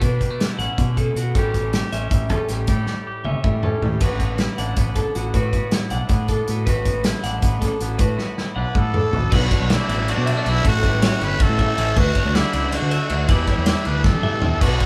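Playful and bright, this math rock and midwest emo passage in 7/8, cut from a longer piece, sets a compressed twelve-string electric guitar playing arpeggios with spring reverb over a clean twangy electric guitar, a growly fuzz fingered electric bass and an up-front loose indie drum kit with dark cymbals, a punchy kick and several fills. A raspy, growling trumpet with slapback echo takes the melody from 8.6 s, close-miked with scooped notes and vibrato, and a double-tracked overdriven electric guitar riff joins in the background at 9.3 s as a new section begins. The band sounds as if it is playing live together in one large studio room.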